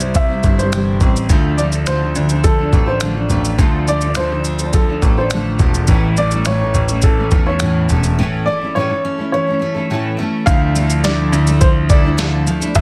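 Acoustic pop at 105 BPM in D minor, tender and reflective, with a woody upright piano carrying the melody through plate reverb and delay over a bright, double-tracked fingerpicked nylon-string guitar, full-bodied steel-string arpeggios sitting in the background, a polished concert grand piano holding down a deep, up-front bass line, and a gritty, tape-warm sampler-style kit of thumpy kick, softly clipped snare, shaker and finger snaps, all moving from C to Dm to A before a break at 8.2 seconds leads into a Dmadd9 close in this dense, heavily limited excerpt.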